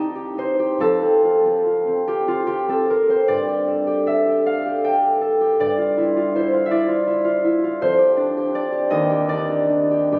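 In a slow, rubato 6/8 lilt of about 47-57 dotted-quarter beats per minute, this gentle, mysterious solo classical piece, cut from a longer work, features an up-front concert harp, mellow, thumb-plucked and ringing, ranging from Eb2 to A5 and drifting through F9, Fadd9, Gsus2 and F69 before settling on Ebmaj7 at 8.9 seconds, all bathed in a long, wet church reverb captured on a phone in the room.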